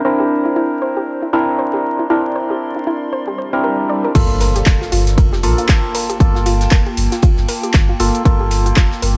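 A punchy, up-front electronic kick drum anchors this deep house excerpt, arriving at 4.2 seconds on the drop and carrying a warm, deep mood at 117 BPM in 4/4 with a swung sixteenth-note feel in G dorian. Before that, a hollow, nasal organ stab, a soft round pluck playing dark arpeggios, and a warbling, nostalgic pad sit over a C9 chord, with a filter sweep on the pluck and a very quiet electronic swell building from 3.3 seconds. All three of these melodic parts carry chorus and sidechain pumping, the stab and pluck trailing tape echo while the lo-fi, detuned pad adds a phaser and its own reverb from the background. At the drop the harmony moves to Gm9 as a round sine sub bass enters with pumping, joined by an overdriven analog drum machine with crash, handclaps and hi-hat, plus a very quiet, dry 70s kit supplying a dark ride and fat snare. A faint impact rings out to about 6.2 seconds, and the whole mix sits in light digital ambience with a layer of vinyl crackle.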